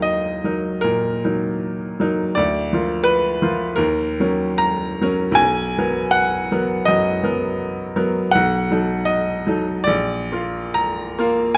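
A bright, up-front baby grand piano plays alone throughout this wistful, melancholic romantic nocturne, its rubato phrasing ranging from deep bass to the upper register and captured by close, detailed microphones within the moderate reverb of a recital hall, in a short passage cut from a longer piece.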